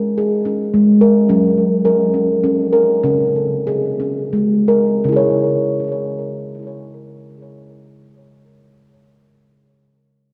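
A lone steel tongue drum, struck with soft rubber mallets, rings out round, pure and mellow, sitting up front with a touch of delay in this meditative, hypnotic world piece in 3/4 with a gentle swing. The music gradually slows from 1.3 to 5.0 seconds before a second section begins, and the drum stops at 8.5 seconds in what sounds like a fragment of a longer work. A wet concert-hall reverb surrounds it, and a worn cassette character adds a warbling pitch drift.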